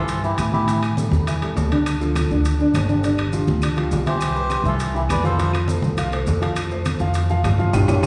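A reedy, breathy melodica opens this festive, sunny salsa fragment alongside an intimate, boxy grand piano, whose action noise is audible, and a growly, thumpy pizzicato upright bass on steel strings, both sitting up front. The melodica drops out at 0.8 seconds and returns at 4.1 seconds with a nasal, smooth line, while the piano and bass carry on throughout. Low-tuned, damped congas played with soft hands stay in the background, joined by ringing metal-shell timbales, grainy, mellow maracas and very quiet, woody claves that sound close and dry. The congas, timbales and maracas have a vintage, band-limited character, and the ensemble sits in a wet recital-hall reverb with the feel of a church or concert hall. The band hits an accent together at 7.7 seconds, near the end of this short section cut from a longer piece.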